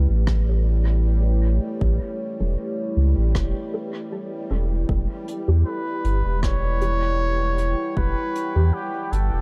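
Spacious and deep, this ambient dub excerpt moves at 78 BPM in E dorian, its dark, detuned sawtooth pad holding sustained chords over a round, up-front sine sub bass while a resonant, bubbling texture with chorus and reverb steps through random filter changes. A tape-warm electronic kick sits in the background alongside a brushed acoustic kit of hi-hat and rim click soaked in dub echo, and from 2.4 seconds a muted, decaying chord stab passes through a filter sweep, phaser and echo as the harmony shifts from A7 to Em7. At 5.7 seconds a veiled, cup-muted trumpet enters up front with a smooth, classical-style solo line trailed by dub echo, all set in an echo-heavy small-room mix.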